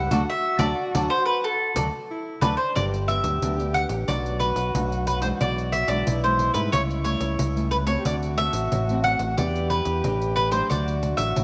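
Festive and joyful, this short cut from a longer samba and choro piece moves at 91 BPM in a straight 4/4, opening on D with a band accent through its first section before the harmony travels from Gmaj7 through Bm7, E7/B, A7/C#, D7 and Em7 and comes home to D. The picked mandolin carries the melody up front, its double strings giving a woody ring, while a mellow tenor saxophone adds a smooth second line with vibrato, subtone and scooped notes in a jazz manner. Beneath them, a fingered electric bass run through an envelope filter sits punchy and direct, and a classical nylon-string guitar, thumb-plucked, sits in the background. A bright, crisp cavaquinho adds background accompaniment only until 2.5 seconds, and a jingly pandeiro, close and dry, joins at 0.1 seconds. A moderate echo chamber reverb and small room ambience give the ensemble a gentle sense of space.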